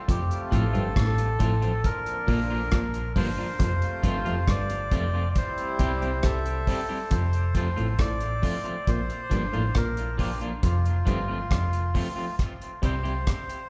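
Roots reggae at a laid-back 68 BPM in F major, sunny and unhurried, cut from a longer piece and set in a wet studio room where the band plays live together. A reedy, breathy melodica carries the melody with dub echo, while a brilliant trombone section adds a second line with light vibrato until 6.6 seconds, over a dark, foam-muted fingered bass and an up-front drum kit with a tight kick, hi-hat and rim click. A twangy electric guitar at the edge of break-up and a stringy, muted clav riff sitting in the background, both also touched with dub echo, fill out the simple F, Bb and C progression.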